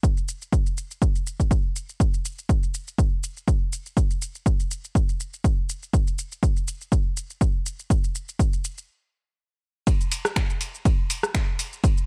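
Set in a digital ambience, this short cut from a longer house track sits at 122 BPM in 4/4 with a light 16th-note swing and a deep, warm mood. An up-front, punchy electronic kick with a tape-tinged analog tone anchors the groove from the start. Alongside it, an analog drum machine supplies finger snaps, hi-hat, rim click and shaker at a lower level. A stop arrives at 8.9 seconds, and the drop arrives at 9.9 seconds. Here a dusty, soul sampler-style kit enters with a gritty, compressed ride cymbal and a fat snare, both high-pass filtered, while the cymbals pump under sidechain compression.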